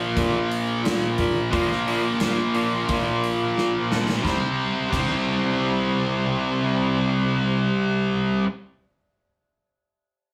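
The scooped high-gain guitar sits up front, its bright, distorted riff carving through this driving, aggressive hard rock excerpt at 88 BPM in a straight 4/4. A cranked stack guitar adds its own riff underneath with an overdriven, picked edge, both guitars spanning Bb2 to C4 and built on power chords moving from Bb5 to C5 at 4.2 seconds. A growling baritone saxophone takes the bass role, raspy and gritty with a punchy vibrato that keeps it present in the low end. The gated 80s drum kit brings a tight kick, medium-tuned snare and bright cymbals in an airy stone-room sound, dropping out at 5.1 seconds after a fill from 3.6 seconds. The rough rehearsal-room recording carries moderate studio reverb, giving the cut a live, unpolished immediacy.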